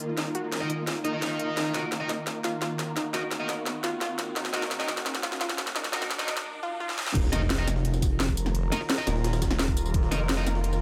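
A straight 4/4 pulse at 172 BPM drives this tense, aggressive dark technical drum and bass in Eb minor, cut from a longer piece, where an up-front electronic kit with a cracking snare and crisp hats fills through a build-up over a swarming, warbling drone, a mellow ethereal pad, a punchy unison pluck playing arpeggios with delay, overdriven picked guitar stabs and a background riser. After a short break, the drop lands at 7.2 s with an impact, a knocking electronic kick, a very quiet gritty jungle-style kit with a high-tuned snare, and a thick, swirling phased saw bass pumping up front in the low register. The sound sits in light reverb.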